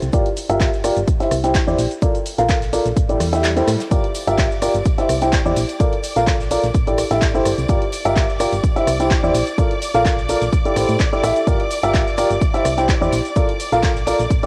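Hazy cassette-tape sound with light small-room reverb frames this bittersweet, energetic piano house excerpt at 127 BPM with a gentle 16th-note swing, where a clear, up-front concert grand piano riff carries the Gm7–Cadd9–Bbmaj7 cycle through a low-pass filter, tape echo and sidechain pumping over a round, dark FM bass, a punchy tape-toned electronic kick, an analog drum machine of handclaps, hi-hat, rim click and shaker, and a very quiet, dry funk kit with a high-tuned snare, until a faint electronic swell at 3.1 seconds, as the kick briefly drops out, ushers in a lush, vibrato-rich violin section holding sustained chords and a very quiet tambourine at 3.9 seconds.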